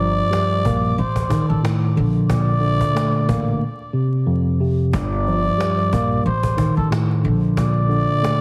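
A cup-muted trumpet carries the melody in this moody, gritty boom-bap hip-hop excerpt. It plays a breathy, raspy jazz-style solo with scooped notes, light vibrato and a growling edge, close-miked and trailed by digital delay. Beneath it, a tine electric piano sits up front with a clean, cassette-tinged tone, voicing changes from Gm7 through Adim and Bbmaj7 to F5 and back. An upright bass played pizzicato on gut strings adds a dark, thumpy low end, while a woody cajon with faint snares keeps a 91 BPM groove with a light 16th-note swing. The cajon drops out from 3.6 to 4.9 seconds before returning. The whole mix has a small-room ambience, heavy radio-style compression and a layer of vinyl crackle.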